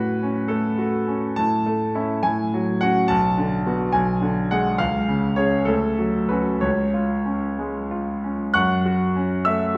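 Stormy and passionate, this short cut from a longer romantic character piece for solo piano moves with free rubato in 6/8 at 61-73 BPM in F# minor, its brilliant, vintage-toned grand piano sitting up front with long sustain across a range from B1 to F#6, passing through Bm, G#dim/B, C# and Dmaj7 before settling back on F#m at 8.6 seconds, all bathed in the wet reverb of a recital hall.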